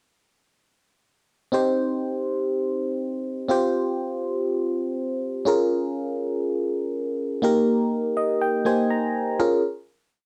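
An FM electric piano enters at 1.5 s with a glassy, bell-like attack and a noise layer, carrying this short, dramatic and urgent pop piece by itself at 122 BPM in a straight 4/4. Set up front, it plays held chords in close voicing that decay after each strike, moving through Cm, Fsus2/C, Bbm7 and Eb/Bb in Bb dorian, across a range from Bb3 to Bb5. Chorus and phaser color the piano's tone throughout. A short fill from 7.9 s leads to a final Bbm7 chord at 9.4 s, which closes the piece by 10.3 s. The sound has the character of a home cassette recording, placed in a booth with a wet, brief ambience.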